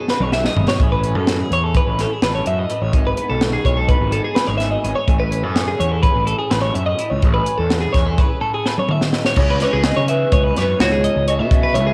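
Wistful and playful, this math rock and midwest emo fragment in 9/8 sets a bright, twangy twelve-string guitar's spring-reverbed, delayed arpeggios over a second twelve-string picking softer phased chords in the background, a growly fuzz-overdriven bass, and a punchy, high-snared fusion kit with dark cymbals that fills at the start and around a break before a breathy, chiffy pan flute with unsteady vibrato takes the melody at 9.4 seconds as the harmony settles on C#m9, all with a cassette-tape home-recording haze.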